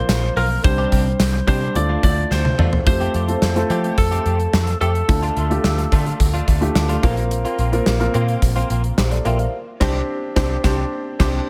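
Light reverb and small-room ambience frame this urgent, moody 1980s-style pop fragment at 108 BPM, where a polished, gated drum kit with a punchy kick, bright cymbals and tambourine sits up front beside a dark, round, foam-muted picked bass, a concert grand piano with deep lows and short sustain carries the accompaniment, a clean, direct-recorded electric guitar riff is coloured by chorus and delay, a slightly broken-up lead guitar sings the melody until 6.4 seconds, and the band hits an accent from 9.5 seconds to the close.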